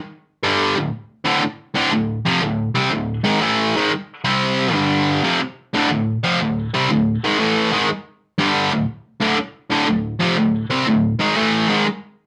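This rock excerpt has a live, single-room sound, with a moderate studio reverb that gives the playing a short, natural tail. A distorted electric guitar takes the solo role, entering at 0.4 seconds and playing until 11.9 seconds. Its tone is bright and overdriven, with a picked attack, and it sits up front in a double-tracked sound that thickens it. The chords move from D5 through C5, G5 and F5 before landing back on D5 as the second section begins at 5.4 seconds. Set in 4/4 with a swung eighth-note feel, the playing has a driving, swaggering mood from start to finish.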